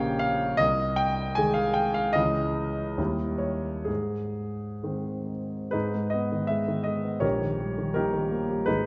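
Hopeful and passionate, this short romantic character piece cut from a longer work has a solo grand piano, natural and up front, moving with rubato in 2/4 at 62-85 BPM through Ab major before turning to G# minor at 5.7 s, its sound softened by a wet recital-hall reverb and a dark top end.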